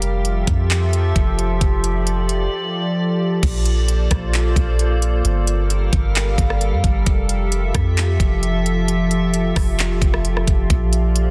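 Atmospheric cloud-rap in a half-time feel, this short cut from a longer hip hop piece drifts in a floating, dreamy mood. A glassy FM pad sits up front with sustained chords that bloom in slowly and hang on with a long release, shimmering through ensemble chorus, its own reverb and a sidechain pumping that ties it to the beat. Underneath, a soft 808-style bass gives deep, round, sine-like notes with a fast attack that decays into a dark tail. An electronic trap kit, also placed up front, brings a knocking kick, crisp hi-hats, handclaps, rim clicks and a crash cymbal, then drops out from 2.5 to 3.4 seconds before returning as the harmony moves from Fmaj7 to Bbmaj7 and on through Gm7. The mix is dry and dense, with a heavily limited modern master that keeps the airy pad pressed close to the punchy low end.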